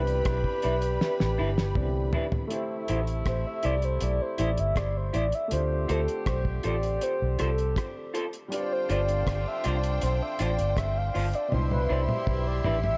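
A light reverb and small-room ambience wrap this longing, smooth lovers rock reggae passage, cut from a longer piece, in a straight, unhurried groove. Up front sit a dark, round, foam-muted electric bass and a cloth-damped, thuddy drum kit with a fat snare, tight kick, rolled-off top, rim clicks, hi-hat and toms, which plays a fill leading into the reedy FM lead's soft solo at 2.5 seconds. That lead is woody and wave-folded with a soft attack and a noise layer, its sustained tone shimmering through chorus, tremolo and tape echo. A lush, clear studio violin section sings with vibrato at the opening, falls away, and returns at 8.5 seconds, while a mellow, distant horn section holds a second line throughout. A warm concert grand piano with deep bass stays in the background, and a bright, twangy electric guitar through a small old amp adds slightly broken-up, lo-fi stabs over chords moving from Cmaj9 through Am7, Dm7 and G7sus4 back to Cmaj9.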